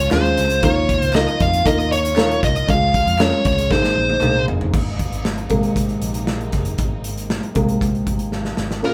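A straight 4/4 pulse at 117 BPM drives this uplifting, hopeful piano-driven pop fragment, built on an up-front acoustic drum kit with a punchy kick, medium-tuned snare and bright cymbals in a pumping room, very quiet hollow group handclaps, and a dark, round, foam-muted electric bass. A smooth, overdriven, picked lead guitar carries the melody up front over a woody, intimate upright piano with audible action noise, while a lush bowed string section with vibrato holds very quiet sustained chords moving through Db, Ebsus2 and Abadd9. The guitar drops away so the slightly detuned piano can take a solo from 4.7 s, drum fills close each section, and a brief electronic downlifter at 8.8 s leads into the guitar's return at 8.9 s, the band sounding live in one room with wet reverb.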